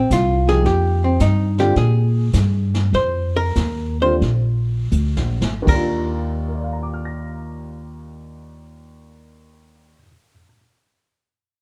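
Small-group swing and bop jazz in Eb major, sophisticated and relaxed, moving between 76 and 110 BPM with a swung feel and easing into a slowdown before a drum fill leads to an Ebmaj9 at 5.7 seconds, as an up-front, hollow-body archtop guitar carries the melody over a woody, thumpy pizzicato upright bass, a distant, roomy brushed kit with dark cymbals that drops out at 6.3 seconds, and a worn, intimate baby grand piano with audible action noise, all in a dark production with light reverb, cut from a longer piece.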